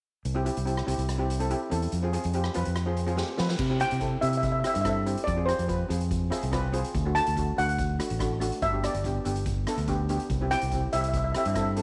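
A street-band drum kit opens this festive, carefree calypso snippet with crash cymbal, hi-hat, kick, rim click and snare in an airy big room, its boomy kick and dark cymbals sitting behind a shimmering double-seconds steel pan accompaniment and a direct, up-front fingered electric bass; after a short drum fill, a second metallic steel pan played with hard rubber sticks takes the melody at 3.8 s and adds its own fill from 6.1 s over changes moving through C, Fm, D and G under light studio reverb.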